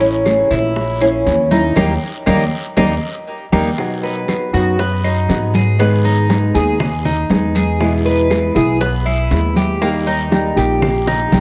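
Cuban son and guajira at 119 BPM with a sultry feel, led by a picked, metallic Cuban tres playing arpeggios through tape echo and an up-front, growly pizzicato upright bass, while a small fingerpicked nylon-string guitar accompanies; bright, damped congas sit in the background, tight high-tuned bongos, woody distant claves and a raspy guiro join at 0.3 s, a band accent lands at 1.8 s and a drum fill closes this cut-off fragment at 11.1 s, all in a dark spring-reverb production with vinyl crackle.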